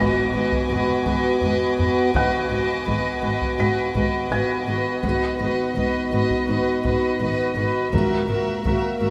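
Tense and uneasy, this short cut from a longer suspense film score moves at 83 BPM in G# minor, its harmony shifting from G#m7 to B6/G# at 5.0 seconds and to F#7/G# at 7.9 seconds. Two chamber violin sections carry the melody and a close second line with light vibrato, soft sul tasto bowing and an intimate, warm tone, while a distant, floating viola section holds a steady accompaniment and a dark, roomy French horn section sustains chords beneath. Cellos and double basses anchor the bass in the background, both bowed sul tasto with a soft attack, the basses dark and smooth-topped. A huge, dark impact and a hard-mallet timpani stroke open the passage very quietly, the timpani returning near the end, while a taiko ensemble struck with hard sticks enters at 0.5 seconds and drives through to the close. A felt-muted upright piano adds mellow, muted texture with audible action noise, joined for the first few seconds by a rich, pure violin section high above, all set in a wet concert hall reverb.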